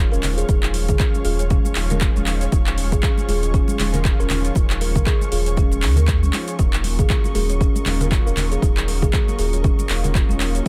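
An overdriven, up-front electronic kick drives this earthy afro house excerpt at 118 BPM, entering half a second in after the other parts are already underway: a deep house kit of handclaps, metallic hi-hat and shaker, hard-hand congas in the background, a round sine sub bass with tube saturation, buzzing woody marimba arpeggios, dark detuned synth brass stabs with chorus and digital delay, lush bowed string chords, and a soft plucked kalimba melody with delay. Sidechain pumping runs through the strings, brass, bass and marimba as the harmony moves from Db/Eb to Ebm7 at 6.6 seconds.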